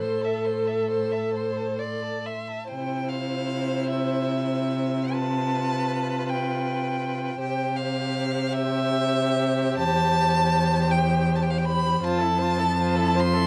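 A classical slow romantic movement for string quartet in C major, elegiac and yearning, unfolding in a rubato 6/8 at roughly 43-54 BPM with light reverb, cut from a longer piece. The first violin carries the melody high and up front with a rich, smooth vibrato, while the second violin shapes an expressive inner line with portamento and the viola supplies an even, warm accompaniment beneath it. The cello anchors the bass, close and rich, as the harmony moves from A minor at the start into C major at 2.7 seconds and settles on Fmaj7 at 12.0 seconds.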